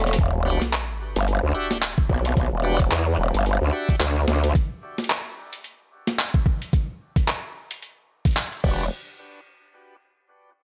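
Glitch hop at 110 BPM in E minor with a swaggering, playful swing, where a growling, wobbling formant-filtered bass with chorus and tube saturation sits up front beside a gritty, thumpy electronic kick and a compressed boom bap sampler-style kit with a high-tuned snare, handclaps, hi-hat and crash, while a sub drop rumbles under the opening impact from 0.2 to 2.4 seconds and a bright, shouting tonewheel organ stabs an Em9 chord through overdrive, slow rotary speaker, sidechain pumping and dub echo, all in a dry mix that breaks off at 8.9 seconds.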